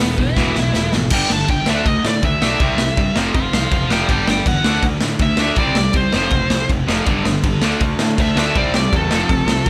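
A straight, driving 4/4 pulse opens in half time, with the raw garage drum kit rattling through a fill before the band shifts into full-speed punk rock at 1.1 seconds. The mood is angry and urgent, built on a churning cycle of G5, D5, C and F chords. Up front, the high-gain lead guitar tears into a distorted solo with a warm edge, while two bright, overdriven rhythm guitars play their riff behind it, one set very quiet. A growly fuzz picked bass digs in beneath them, and the drums sit close and gritty, with a boomy kick, a medium-tuned snare, crashing cymbals and a pumping small-room sound with a rolled-off top. At 7.1 seconds a double-tracked, compressed overdriven guitar joins the riff in the background, thickening the dry, raw mix.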